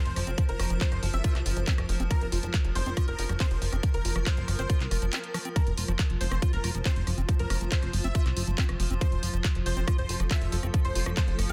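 A huge, detuned supersaw melody carrying phaser, dub echo and sidechain pumping opens this intense, psychedelic trance excerpt at 139 BPM in F major alongside a pulsing gated chord texture with chorus, joined by a cloudy, evolving granular pad, a punchy, dark analog bass with a filter pluck, a garage drum kit of handclaps, warm hi-hat and rim click, a squelchy, resonant acid bass riff with phaser and delay in the background, and a tight, up-front electronic kick, all in a dense, heavily limited mix with a short break at 5.1 seconds.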